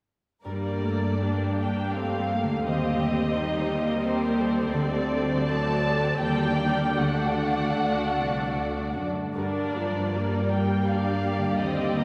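A rubato 3/4 pulse drifting between 74 and 89 BPM carries this melancholic, yearning classical excerpt in G minor, with all parts entering together within the first half-second. Muted violins sing the high melody over a second violin line, while con sordino violas fill in the accompaniment and a softly attacked cello section holds the bass, their veiled, dark, vibrato-touched tone giving the strings a lush ensemble sound. A mellow concert harp rings out fingerpicked arpeggios beneath, and a deep church reverb lets the progression from G minor through D and Ebmaj7 back home bloom in a spacious, resonant church acoustic.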